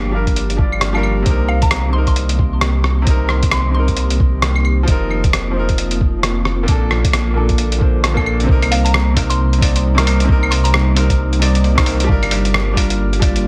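A light reverb and digital ambience give this future garage passage a rainy, ghostly air, cut from a longer piece and set at 133 BPM in 4/4 with a 16th-note swing in C dorian. A bright, woody upright piano carries the accompaniment through sidechain pumping and digital delay, while a warbling, nostalgic pad with detuned sawtooth and triangle tones holds sustained chords in the background, colored by chorus, phaser and its own reverb. Underneath, a deep, round sine sub bass pumps from the start, and at 0.3 s a thumpy, muffled electronic kick enters alongside a tape-warm, sampler-style kit of claves, hi-hat and rim click that sounds re-recorded in a large room. A mallet-like FM pluck with a noise layer offers a mellow, percussive melody in the background, first at 1.5 s and again from 8.7 s, blurred by analog chorus and delay. The harmony moves through Gm7, Cm7, F7sus4 and Bbmaj7 before a second section returns to Cm7 and settles on Gm7.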